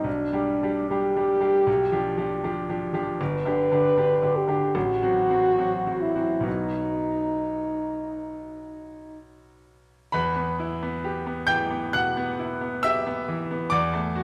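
A French horn and a grand piano begin together in this melancholic, solemn fragment of a longer romantic classical duo. The horn carries the melody in a warm, classical style, its tone marked by light vibrato and a soft attack, while the piano supports it with a bright, brilliant and open sound whose notes have short sustain. The playing moves with an unhurried rubato, and the harmony travels through G major and diminished colours before settling toward a B major chord. The horn falls silent at 9.2 seconds, leaving the piano alone as the music moves into a darker passage on an E minor chord at 10.1 seconds and continues until 14.2 seconds. Both instruments sit up front within a moderate recital hall reverb that gives the performance a sense of space.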